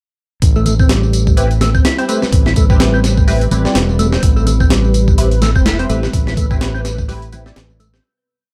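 A gritty, compressed sampler breakbeat with a thumpy kick opens this raw, funky piece at 0.4 seconds, together with a bright fingered electric bass sliding through long gliding notes and a faint analog tambourine layered over the edited loop. A mellow, round tonewheel organ repeats a 32-step riff through slow rotary speaker and tape echo, while very quiet, damped congas sit close and dry beneath it. A nasal, band-passed stab fires syncopated chords through phaser and ensemble chorus, and from 1.7 seconds a deep, moody pad breathes in the background with sidechain pumping before the groove fades out from 5.5 seconds.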